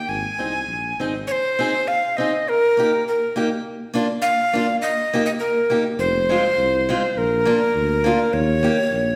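A breathy, up-front tenor recorder with a woody chiff and slightly unsteady straight tone carries the melody in this festive, jolly alpine folk dance fragment, cut from a longer piece, played with a loose rubato feel over a bright, boxy fingerpicked steel-string parlour guitar with audible finger squeak, while a dark, punchy tuba sounds the bass briefly at the start and returns from 6.0 seconds, all set in the lush reverb of a recital hall.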